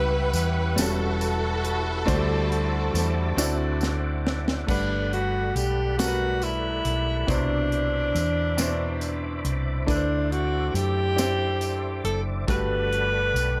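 This excerpt of slow, uplifting gospel in 6/8 opens with a lush, bowed string section carrying the melody over a brilliant concert grand piano, a round, punchy hollow-body electric bass and a tonewheel organ holding sustained chords in the background. The organ is clear and lightly overdriven, with key click, chorus vibrato and a slow rotary speaker. A jingly tambourine and a tight funk drum kit with a high-tuned snare, hi-hat, kick and crash join almost at once. The strings stop at 3.8 seconds as a drum fill leads into the next passage. At 4.7 seconds a soulful tenor saxophone takes over the melody, warm with light vibrato, sounding distant and roomy yet up front. Rich ninth and suspended chords pass beneath it in a small room with light reverb, giving the soulful groove an intimate feel.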